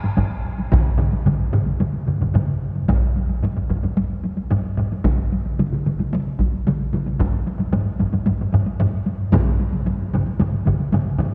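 Up front, a hard-stick taiko ensemble in a live room joins two close and dry hard-stick taiko ensembles, one of them also up front, while a heavy-stick, compressed and saturated taiko ensemble sits in the background, driving this powerful, ceremonial Japanese traditional drum excerpt at 112 BPM in straight 4/4, which moves into a new section at 2.9 seconds under a cathedral reverb that rings for 5.3 seconds.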